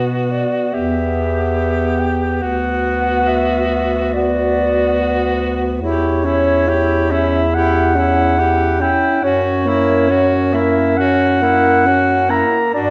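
A dark, soft-edged clarinet carries the yearning melody through this melancholic classical fragment for single-reed quartet, drifting at a rubato 70 BPM in 4/4. Beneath it, a bright alto saxophone with vibrato sings a second line, a mellow tenor saxophone with light vibrato fills in the accompaniment, and a warm bass clarinet anchors the low end from up front. The harmony moves from E minor through B minor and a diminished chord toward F-sharp seven, all bathed in a lush scoring-stage reverb, before the passage is cut off from the longer piece.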